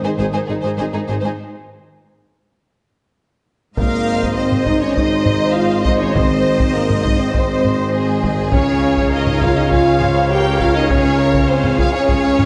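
In a straight 4/4, this relentless, dark cut from an epic orchestral film score layers a lush symphonic violin melody over a close, soft-attacked studio violin second line, a smooth viola accompaniment and mellow French horn chords, with the cello section, focused double basses and a distant, roomy tuba holding the bass in the background, and a hard-sticked taiko ensemble enters at 3.8 s, all bathed in wet scoring-stage reverb.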